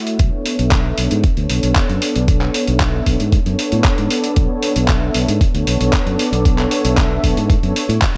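A thumpy, gritty electronic kick drum drives this short nu-disco cut at 115 BPM in a straight 4/4. Its overdriven, compressed sampler-style sound carries the room tone of being re-recorded in a small space. Beside it, a dusty soul drum kit adds handclaps and hi-hat with the same overdriven grit. A bright, growly fingered electric bass enters at 0.2 s, playing between B1 and A2 over a Bm9 chord. The warm analog pad sits up front from 0.0 s, sustained and mellow with a slow attack, a warbling, detuned sawtooth tone, chorus and slapback echo, while a filter sweep moves across it throughout. The mood is groovy and sensual, and the dry mix carries little reverb.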